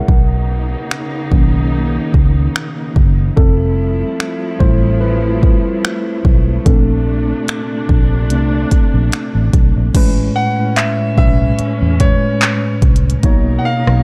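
Contemporary R&B at 73 BPM with a lightly swung sixteenth feel, this smooth, tender excerpt features a mellow, up-front tine electric piano soloing until 9.9 seconds over lush bowed strings with sidechain pumping, a round, foam-muted fingered bass, and a glitchy electronic drum kit of deep kick, clicky hats, crash, finger snaps, handclaps and rim clicks, moving through major-ninth chords before a clear concert grand piano enters with a long-sustaining melody at 10.4 seconds, set in a dark, warm digital ambience.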